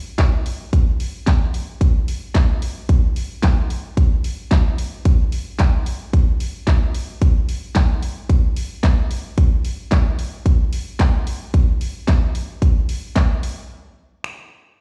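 An electronic house drum kit starts at 0.2 seconds, layering a punchy kick and snare with bright hi-hats, finger snaps and handclaps in a pop groove. The tempo sits at 111 BPM in a straight 4/4, and the mood is energetic with a bittersweet edge. The kit is produced and sits up front in the mix. Light reverb and the ring of a bare stone room give the sense of the beat playing through a big sound system. The opening section gives way to a brief new passage at 13.7 seconds, and the drums stop at 14.4 seconds, as this short piece is cut from a longer track.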